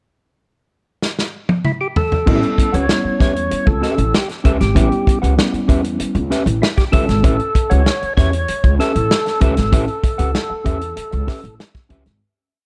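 A dark, small-room funk recording with a strutting feel, opening with a drum fill at 1.0 s on an up-front acoustic kit with dark cymbals, tight kick and a medium-tuned snare in a syncopated groove with ghost notes, before a lightly overdriven, fat tonewheel organ states short percussive call phrases through a slow rotary speaker with vibrato. At 2.3 s the groove arrives: woody, thumpy upright bass plays a syncopated riff with muted ghost notes and chromatic approaches, clean fingered electric guitar scratches out sixteenth-note rhythm, and a mellow tine electric piano pushes rootless A9 stabs until 6.2 s. The remaining parts then carry on into a fade-out from 9.7 s.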